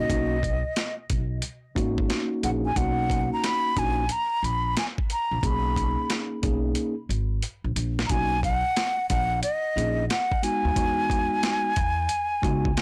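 Cool and relaxed, this jazz-hop cut from a longer hip hop piece rides a swung sixteenth-note feel in 4/4. A breathy concert flute carries the melody up front, its tongued, slightly unsteady phrases colored by vibrato and an analog delay. Beneath it, a mellow tine electric piano heard through its built-in speakers voices the chords cleanly, while a woody pizzicato upright bass with steel strings adds transformer saturation to its low line. The sampler-style boom bap kit sounds compressed and gritty, with a thumpy kick, a high-tuned snare and hi-hat, and it plays a drum fill from 6.8 s that leads into a new section at 8.1 s. The harmony rests on Bmaj9 before moving to Emaj9 at 10.8 s, all within light reverb and a blown-out, overdriven recording.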